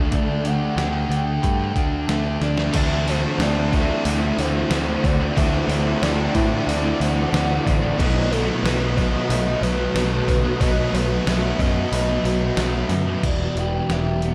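A picked electric bass sits up front, direct and amped, anchoring this melancholic, dreamy shoegaze and dream pop excerpt at 92 BPM in a straight 4/4. Above it, a hollow, woody clarinet-like synth lead carries the melody with a soft attack, vibrato, chorus and a diffuse ambient delay, while a gritty, pitched-down trip hop sampler-style drum kit adds a thumpy kick, medium-tuned snare, hi-hat and crash with a tape-warm, compressed character. Layered guitars fill the background: a thick fuzz guitar with analog chorus, a crunchy overdriven riff trailed by reverse reverb, and a dark, slightly broken-up guitar through a small old amp playing very quiet arpeggios. A bright, double-tracked tight distorted guitar joins at 2.7 seconds after a drum fill, and a cloudy, evolving granular pad drifts in at 3.9 seconds with blurred, sustained chords. The harmony moves from Dsus4 through D9 and B7 to Em7; the kick and snare drop out briefly before 13.2 seconds, when the pad and tight guitar fall away. 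The whole mix is soaked in a lush hall reverb that keeps it hazy and dreamlike.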